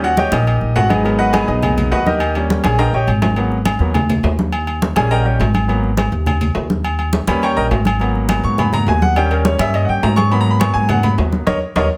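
A moderate studio reverb surrounds this short salsa excerpt, with the piano and upright bass sitting up front. The mood is passionate and driving, with the band cycling between D#7 and G#m7 and closing on a D#5 accent at 11.5 seconds. A bright baby grand piano takes the solo throughout, its brilliant, intimate tone polished and present, carrying long sustain and audible action noise. Beneath it, a woody, thumpy pizzicato upright bass with steel strings adds a dark low end. Ringing, medium-tuned congas from a small room play alongside compressed, saturated agogo bells and timbales with metal shells, and a drum fill cuts through at 2.6 seconds.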